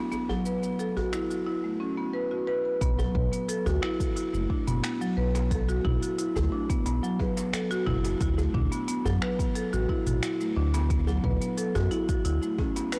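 Hypnotic and meditative, this organic downtempo piece in B minor moves at 89 BPM in a straight 4/4, opening on up-front marimba arpeggios played with medium mallets, carrying tape echo and a filter sweep through the first 2.8 seconds, alongside a tight, cracking djembe with metal rattles and an electronic, produced afro-pop kit of finger snaps, smooth hats, shaker, toms and a soft-clipped snare, before a round, dark analog bass with tube saturation and a deep electronic kick arrive at 2.8 seconds as the harmony shifts from a B7 chord with its third omitted to D at 8.2 seconds, all set in light reverb on a blown-out, overdriven recording.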